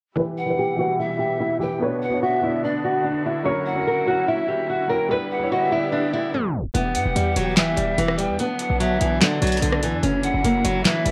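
A half-time trap groove in 4/4 at 146 BPM arrives at 6.7 seconds, when a booming analog drum machine with a crisp snare, handclaps, metallic hi-hats and rim clicks enters alongside a short, punchy 808-style bass built on a sine tone with a noise layer, both placed up front. This hard-hitting, melancholic hip hop excerpt, cut from a longer piece, opens with a bright, fingerpicked nylon-string guitar carrying the melody through a low-pass filter and delay, over a moody minor progression that begins on E minor. Beneath it, a soft felt-muted upright piano with audible action noise plays accompaniment until 6.8 seconds, while a smooth, bowed studio string section holds sustained chords with gentle vibrato. A distant, airy pan flute with a woody chiff adds a second line high above. A filter sweep runs through the opening section, which closes with a tape stop at 6.3 seconds. The whole mix sits in light reverb and small room ambience, colored by worn, warbling cassette tape and drifting pitch.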